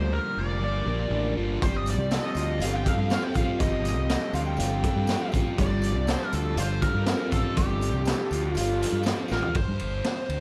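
A dark, hypnotic psychedelic rock excerpt opens on a smooth, overdriven lead guitar melody soaked in wah and tape echo, over a dark, double-tracked picked guitar riff with phaser, a reedy vintage combo organ holding chords with heavy vibrato in the background, and a round, punchy fuzz bass up front. At 1.6 seconds the harmony moves from Gm7 to Fadd9/G as a raw, gritty garage drum kit enters with a boomy kick and rolled-off top, joined almost at once by a very quiet, jingly tambourine. A drum fill lands at 9.3 seconds, and a small room ambience surrounds the whole excerpt.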